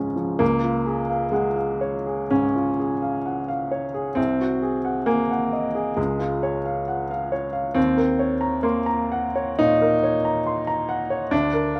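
Close, detailed microphones place a clear upright piano up front, its woody, intimate tone carrying audible action noise and set in a moderate recital hall reverb of about 1.5 seconds. This is a romantic character piece for solo piano, classical in style, with a hopeful, lyrical mood. The tempo sits between 59 and 71 BPM in 4/4, and the rubato feel lets the pulse breathe freely. Played in Db major, the piano spans from C2 to C6, moving from Db through Ab7/C at 4.2 seconds, back to Db, and on to Ebm7 at 7.8 seconds. Cut from a longer piece, the passage runs to 11.8 seconds with a natural, unforced sound.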